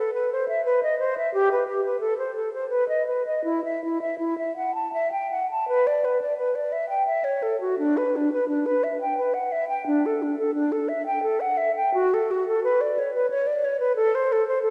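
A lone concert flute opens this brief cut from a longer classical fantasia in a baroque style, its airy, hollow tone carrying vibrato and tongued notes with softened highs. Moving in a flexible three-beat rubato between D4 and A5, the unaccompanied line feels introspective and solemn, settling into a minor key at 5.7 seconds. The flute sits up front, wrapped in the lingering reverb of a concert hall.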